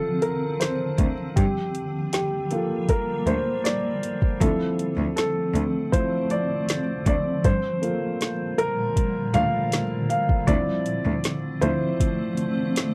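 A dark, woody upright piano carries the lead up front in this heartbroken pop ballad excerpt, moving between Dm7 and Gm7 over a cloudy, detuned granular pad with its own reverb. Electronic R&B drums with a soft kick, a woody snare and metallic hats enter at 0.2 seconds, and a single bowed cello with clear vibrato holds the bass line from 1.0 to 11.7 seconds. The whole has the dry, close feel of a 1970s studio with light reverb, giving it an intimate, emotional weight.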